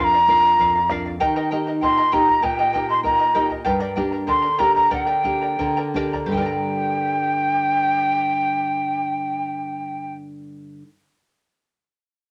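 Moderate studio reverb gives this festive, earthy Andean folk excerpt in 2/4 a natural room sound, with a breathy, wooden large quena carrying the melody up front with vibrato, a soft attack and rolled-off highs over the shimmering double strings of a fingerpicked charango and a bright classical nylon-string guitar, while a round bombo sits close and dry in the background until 6.7 s, the music slowing from 3.6 s before the second section begins at 6.3 s.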